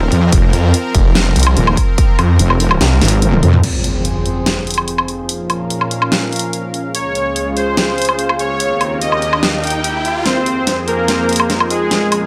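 A heavy, chaotic half-time dubstep excerpt in F minor at 145 BPM opens on a drop: a resonant, detuned wobble bass with chorus and overdrive and a growling, aggressive distorted saw bass sit up front over a punchy electronic kick and a big-room dance kit with a huge snare, crash, hi-hat, toms and woodblock, while a lush supersaw pad pumps beneath a low-pass filter. By 3.6 s both basses have stopped, making room for an electronic impact and riser as the pad's filter sweeps through Fm, Bbm, Db and Eb. A deep, moody ambient pad with chorus and reverb breathes in the background, a smooth soft supersaw melody with dub echo enters at 6.9 s, and a drum fill and build-up from 10.3 s return to Fm in light digital ambience.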